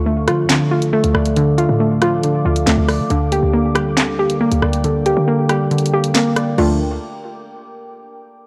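Hip hop drill in D minor at 138 BPM with a half-time feel, tense and cold, cut from a longer piece that moves from Dm to Gm/D at 3.1 seconds. A soft, round pluck plays mellow arpeggios up front with chorus and analog delay, over a clean tine electric piano accompaniment behind a low-pass filter and a deep, dark ambient pad holding detuned sustained chords with chorus and reverb, while a punchy, tight 808-style bass anchors the low end. The electronic drill kit brings a sharp snare, bright hi-hats, handclaps, rim clicks and crash cymbal from 0.3 seconds, with its kick muted from 5.7 seconds, in a dry, gritty cassette-tape mix with light digital ambience.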